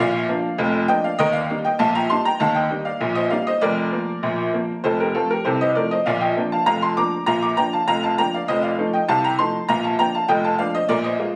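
Ragtime piano in Bb major, cheerful and jaunty, moving at 99 BPM in a straight 2/4. A single upright piano carries the whole short passage alone, spanning a broad range from deep bass notes up to high treble ones, and it sits up front in the sound. Its tone is clear and woody with a worn, slightly detuned character that gives it a lived-in charm. The harmony moves from Bb to Eb, back to Bb over F, and then to F by 4.8 seconds, and the clip, cut from a longer piece, ends at 11.4 seconds. Captured on a phone in the room, the recording has a club-like reverb with a light touch of ambience and audible compression.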